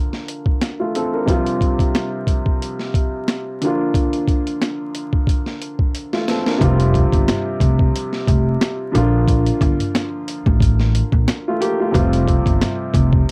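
Boom-bap hip-hop with a warm, nostalgic feel. A dark, mellow upright piano is filtered through cassette-tape haze, alongside a gritty, pitched-down sampler drum kit with a thumpy kick and high-tuned snare. A drum fill at 5.9 seconds leads into the entry of a woody pizzicato upright bass with tube saturation at 6.6 seconds, over the vinyl crackle of a dry home cassette recording.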